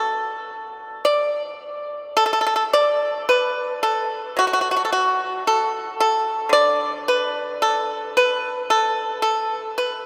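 Flowing in a free, rubato pulse, this short fragment of Chinese traditional music features a solo pipa that sounds elegant and serene. The instrument sits up front with a warm, dry, percussive tone from its fingerpicks, while a cathedral-like hall wraps it in long, lingering reverb. After a brief opening phrase, a new section begins at 2.2 seconds and carries on to the end at 10.1 seconds.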